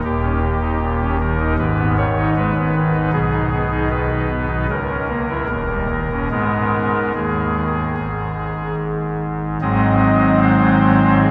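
Grave and dark, this brief fragment of a longer classical work is a chorale-style piece for solo pipe organ in G# minor, moving at a measured 72-78 BPM in a straight 4/4 and tuned to A4 = 445 Hz. The organ speaks through a soft reed voice, an oboe solo stop in baroque voicing whose tremulant lends the tone a trembling, plaintive quality, and it sits up front in the balance while spanning from D#1 up to D#5. The harmony opens on D#7 and settles into G#m, passing through G#m/B and A#dim/C# before returning via D#7 to G#m at 6.3 s. At 9.6 s a new section begins on G#7, and the passage is cut off at 11.3 s. A cathedral reverb with a long 6.5-second decay surrounds the playing, and the listener seems placed further back in the vast, resonant space.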